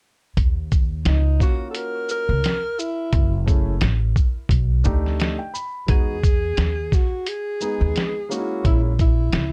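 A dark, dry production gives this mellow, smoky jazz-hop excerpt in Eb minor a close, intimate feel at 87 BPM, with a 4/4 groove swung on the 16ths. A muffled, compressed, pitched-down sampler-style kit with a thumpy kick, medium-tuned snare, hi-hat and shaker sits up front beside a woody pizzicato upright bass, while a solo alto saxophone enters at 1.1 seconds with vibrato and a smooth top, trailed by analog delay. A vintage-sounding grand piano with audible action noise comps softly underneath, adding a fill at 4.9 seconds as the harmony moves from Ebm7 through Gbm7 and B7alt to Emaj7 and Bbm7b5.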